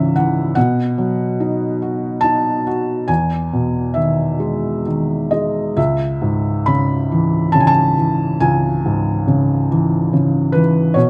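Closely miked with a touch of reverb, this short classical excerpt puts a soft, mellow felt-muted upright piano up front, its intimate tone carrying a melancholic, wistful mood across a 3/4 metre with freely breathing rubato. The solo piano opens with a brief fill in its first 0.6 seconds, then moves through C#m, B7 and Emaj7 before settling on C#m7 at 5.8 seconds, spanning from deep bass notes to a gentle upper register.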